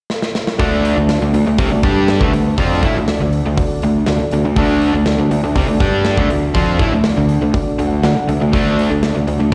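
Heard as a live gig through the venue's PA with light recital-hall reverb, this short cut from a longer classic rock piece has a driving, confident straight feel that opens on a drum fill before the band lands on a D chord at 0.6 seconds. Up front, a punchy kick and medium-tuned snare with hi-hat anchor a crunchy overdriven guitar riff with slapback echo and a fuzzy, overdriven picked bass, while a cranked stack guitar plays a riff very quietly beneath them. In the background, a reedy electric piano with fast tremolo and slapback echo adds accompaniment and a fill at 7.5 seconds, and a lush, vintage string machine ensemble holds sustained chords very quietly.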